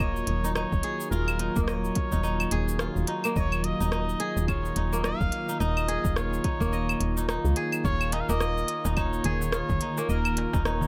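Organic downtempo in Eb minor at 107 BPM, this hypnotic, warm excerpt moves in 4/4 with a 58% swing on the 16ths and rests on a single Ebm7 chord. A cup-muted trumpet carries the melody between Bb4 and F5, its soft, veiled pop-style tone touched with light vibrato and a delay. Around it, a kora spins bright, ringing fingerpicked arpeggios through a digital delay. A detuned sawtooth analog pad holds smooth sustained chords with chorus and sidechain pumping. The woody FM bass sits up front, round and dark with a fast, decaying attack, alongside a tape-toned electronic kick and an organic electronic kit of cabasa, claves, crisp hi-hat and rim click, both re-recorded in a small room. At 8.1 seconds a small, high, hard-handed metal-shell darbuka enters in the background, and the mix carries little reverb.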